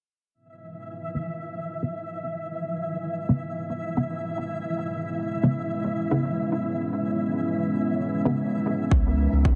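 Bathed in a huge ambient reverb, this hazy, meditative dub techno fragment at 112 BPM in C# minor, lightly swung, opens on a moody, detuned analog pad with chorus and a flickering, granular texture, while a muted, wave-folded dub chord stab with phaser, cassette tape colour and dub echo carries a filter sweep over a C#m7 chord; these three parts pump to the sidechain, joined at 8.9 seconds by a clean, smooth sine sub bass that pumps as well and by an overdriven, up-front electronic kick drum.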